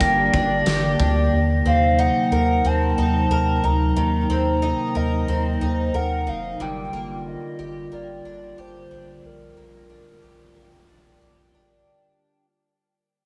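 Opening on a brief touch of distant, roomy indie drums with a fat snare and a mellow rubber-mallet glockenspiel ringing through digital delay, both gone within about 1.1 seconds, this dreamy, floating dream pop fragment in Bb major at 91 BPM drifts from the very start on a hollow, woody clarinet-like synth melody with chorus, vibrato and delay, a warbling, nostalgic lo-fi pad holding chords from Gm through Ebm6 and Gm7 to Bb6, shimmering octave-doubled twelve-string acoustic guitar arpeggios, and a round, deep analog bass, all fading out across its roughly 12 seconds.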